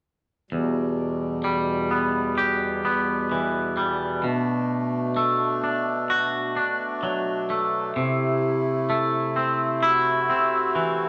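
A large studio's reverb wraps this short fragment in a wet, roomy glow, with the band captured playing live together in one space. It is a slow, cinematic rock piece at 64 BPM in 4/4 with a straight feel, set in E minor and carrying a melancholic mood. A clean, twangy electric guitar sits up front, playing fingered arpeggios from E2 to G4 with a scooped, warm tone. Beside it, a hand-pumped harmonium holds sustained chords between E2 and F#4, its reedy, nasal, breathing voice pushed mid-forward and also up front. Both parts play throughout, from 0.5 to 11.1 seconds, moving from Em to Bm7 at 4.2 seconds and on to Am/C at 8.0 seconds.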